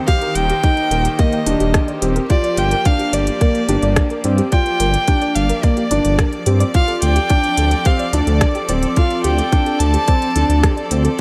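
A clear studio string section opens this moving, intimate stretch of piano and strings electronica, its bowed, earthy sustained chords pumping from sidechain compression at a straight 108 BPM in 4/4. Almost at once a dark, woody solo violin carries the melody high above, its light vibrato trailing tape echo, while a felt-muted upright piano plays a soft, mellow riff, also echoed on tape. A tight electronic kick sits up front, joined by a tape-warm electronic kit of crisp hi-hats and rim clicks re-recorded in a large room. In the background a round, gentle pluck spins arpeggios through chorus, tape echo and sidechain pumping, and from 0.4 seconds a deep, rumbling detuned saw bass with beating tones anchors the low end. The harmony moves from Cm7/Eb to Gm7 and then Dm7 under light reverb, in a short cut from a longer piece.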